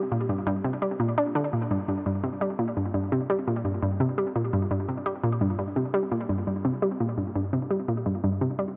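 In a straight 4/4 pulse, this hypnotic, expansive ambient excerpt features a lone analog pluck, round and nasal with a bright, up-front presence, playing solo from 0.1 to 8.7 seconds through chorus and tape echo and sinking into a huge ambient reverb.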